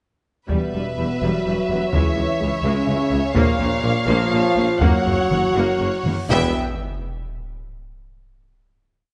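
At 0.5 s, a heroic, epic film-score cue opens in a straight 6/8, with single big strokes from a taiko ensemble struck with hard sticks in a small room. Over the taiko, a lush, distant violin section carries the expressive melody with vibrato and a soft attack. A clear studio violin section sustains a smooth second line beneath it, and a rich viola section churns a driving ostinato in the background. Low in the mix, a very quiet cello section drives a bass ostinato, while a focused double bass section and a roomy solo tuba double the bass line. Sustained brass chords come from a warm French horn section that also carries the melody and a mellow trombone section doubling the tune at the octave. A huge, dark reverse cymbal rises at 6.0 s into a low sub-drop impact at 6.3 s, and the whole piece settles onto a final chord in a moderate scoring-stage reverb.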